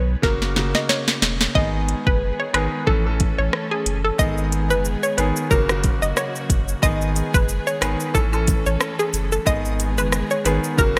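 A hollow, detuned square-wave pluck carries the melody in this bouncy, tough dancehall excerpt, its fast filter attack and short decay thickened by chorus and digital delay over a swung 91 BPM groove in G# minor. The afro-pop drum kit sits up front with a deep kick, sharp snare, metallic hats, rim clicks and shaker, all coated in gated reverb. It opens with a fill from 0.2 to 1.6 seconds before the main section settles in. Underneath, a round sine sub bass holds the low end while a brilliant grand piano with short sustain plays accompaniment with a sidechain pump, over chords that move between G#m, A and F#. From 1.6 seconds a soft, bowed string section joins in the background, sustaining chords with vibrato and a smooth top that pumps in the same way. A very quiet, dry layer of woodblock and cabasa enters at 6.8 seconds, and the whole cut carries a light small-room ambience and a crisp 1980s-style digital sheen.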